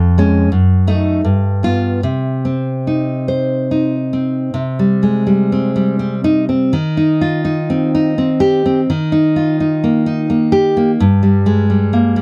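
A lone nylon-string guitar opens this short passage, cut from a longer romantic piece for solo classical guitar, with a full-bodied, fingerpicked voice that sits up front. The playing unfolds in a flexible, rubato three-beat metre, giving the music a wistful, intimate mood. Early on the harmony passes from Db/F through F#m6 and G7 to settle on Cm at 2.0 seconds. A new section begins at 4.5 seconds, drifting from a bare C5 through Cm/Eb to Eb and closing on a rootless Eb/G around 11.0 seconds. The guitar's fresh strings ring with a deep classical tone across a range from F2 to C5, captured in a dry, close studio sound with a 1970s character and little reverb.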